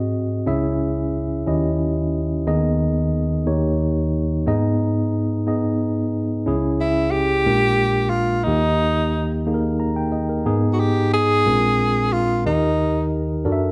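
Solemn and fervent, this slow gospel piece moves in 6/8 at 60 BPM in G# harmonic minor, with a mellow, clean tine electric piano laying down the chords alone from the start. At 6.8 seconds a breathy tenor saxophone enters up front with a jazz-style solo melody, colored by vibrato and scooped notes, until 13.2 seconds. The dark, warm production sits in a moderate recital hall reverb with a touch of small-room ambience.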